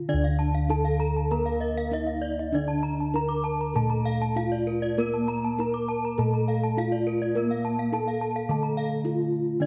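Soft, airy bronze metallophone struck with padded disc mallets carries the melody in this brilliant, hypnotic Balinese gamelan excerpt in D pelog at a straight 98-110 BPM in 4/4, over round, up-front bossed gongs playing the bass and a lower metallophone with a wooden mallet holding the accompaniment, while two higher metallophones spin arpeggios (one close-miked, dry and full under a wooden mallet, the other bright under a horn mallet until 8.9 s), the paired tuning of the melody and arpeggio metallophones adding shimmering beats within a moderate scoring-stage reverb.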